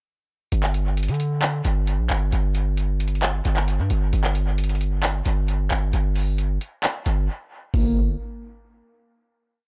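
This is a short, complete trap piece with a half-time hip hop feel and a melancholic, menacing mood. From 0.5 s, a booming analog drum machine lays down the beat with a deep kick, metallic hats in fast rolls, handclaps and toms, its tape-warm sound touched by dub echo. Up front beside it, a distorted 808-style bass carries long sub-bass notes with pitch slides, heavy and saturated with a noisy grit layered over its sine core. After a brief break at 7.3 s, a felt-muted upright piano appears at 7.7 s for a fleeting, mellow phrase doubled in octaves, intimate and soft with audible action noise and its own dub echo. The piece ends on a final chord that rings out until 9.5 s, in a dry, echo-heavy mix whose top end stays dark and rolled off.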